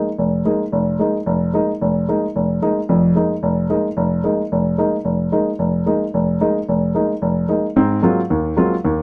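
Spiritual and hypnotic, this brief jazz fragment, cut from a longer piece, moves at a brisk 222 BPM in 4/4 with a swung eighth-note feel. A lone baby grand piano, intimate and up front with audible action noise and short sustain, stays in a low-to-middle register, dwelling on a Bb7sus4 before shifting to Ab13 at 7.8 seconds. Light reverb and a dark, warm production give the sound a close, intimate character.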